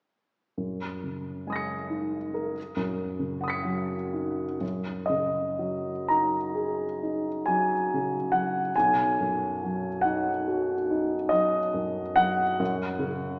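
A solo grand piano, intimate and natural with its action noise audible, drifts in a slow, rubato 9/8 through dreamy, luminous impressionist harmonies spanning B1 to C#7, heard from further back in a resonant concert hall with a small-speaker tone in this brief fragment of a longer classical piece.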